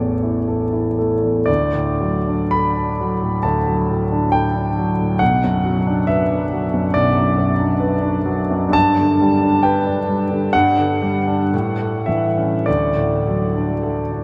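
A huge, wet reverb fills a vast, echoing space, its tail lingering for 7.6 seconds around a solo concert grand piano that sits up front with an intimate, polished tone, deep bass, long sustain and audible action noise. This dreamy, nostalgic romantic nocturne unfolds in a free rubato, its harmony drifting from A through D, B minor and G before settling back on D at 12.7 seconds. The piano spans from low A1 to B5 across this short passage cut from a longer piece.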